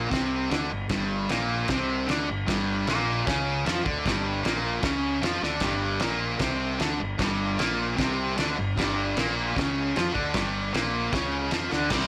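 A bright, double-tracked fuzz guitar opens this gritty, swaggering garage rock excerpt, playing a distorted, picked riff that sits up front in the mix with a compressed bite. A fingered electric bass enters alongside it, its overdriven fuzz tone round and punchy, anchoring the low end under the riff from the first moment. A cloth-damped, thuddy acoustic drum kit joins almost at once, with a fat snare, a tight kick and dark, muffled crashes, sounding lo-fi and saturated in a small room with a rolled-off top. The straight 4/4 groove drives through a single section built on one minor chord, broken by drum fills at 5.4 and 11.7 seconds. Light reverb gives the band a raw sound, and the piece, cut from a longer song, stops at about 12 seconds.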